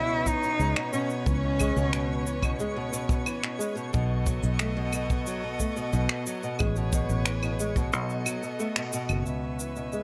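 Studio reverb frames this delicate, autumnal folktronica excerpt, where a rich, bowed solo cello with vibrato carries the melody through digital delay until 2.6 seconds, over smooth chamber chords from a string quartet. A small, fingerpicked nylon-string guitar sits up front with arpeggios softened by a low-pass filter and delay, while a bright, foam-muted fingered electric bass anchors the C#m7, B7 and Amaj9 changes and a twinkling, sparkling granular shimmer hovers in the background. A punchy acoustic kick drum and tape-warm electronic shaker, finger snaps and claves supply the beat, with the kick dropping out for a break at 7.9 seconds that carries a brief band accent before the return to C#m7.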